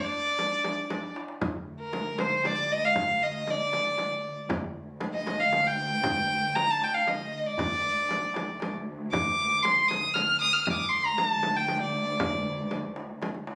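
Arabic maqam ensemble music in D maqam kurd, hypnotic and longing at 117 BPM in 3/4, led up front by a single reedy, gut-string violin with light vibrato and plate reverb, while a woody, plectrum-plucked oud sounds only in the opening 1.1 seconds, a crisp metal-shell darbuka sits in the background beside a close, dry frame drum, and from 1.4 s a chamber cello section holds a D2 drone with soft attack and portamento, in this excerpt recorded on a phone in the room with added studio reverb.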